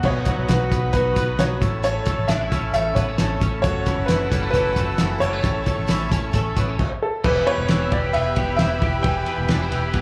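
A woody, slightly detuned upright piano carries the melody from 0.1 to 9.7 seconds, its action noise audible and its tone lightly tube-saturated with slapback echo, in this restless, wistful jangly indie pop fragment at 133 BPM in E dorian, heard as a live gig through a club PA. Bright, twangy twelve-string electric guitar arpeggios with ensemble chorus sit over a muffled, cloth-damped drum kit with a fat snare and dark cymbals, a round foam-muted fingered bass, and a buzzy combo organ and picked steel-string acoustic guitar set in the background. At 3.6 seconds a lush, very quiet bowed string section adds sustained chords as the harmony moves from B through A and F#m7 to Em.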